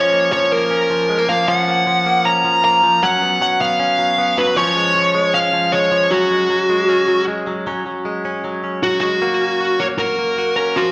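Bright and breezy, this indie pop passage in F# major moves at 155 BPM in a straight 4/4, with a dark, fuzz-distorted lead guitar carrying the melody up front. Beneath it, a twangy, scooped and compressed clean electric guitar, recorded direct, picks arpeggios through a progression that begins on A#m and settles on F# at 9.2 seconds, after a new section begins at 7.7 seconds. The two guitars sound like a band playing live in one room, bathed in a large, wet studio reverb, in a short cut from a longer piece.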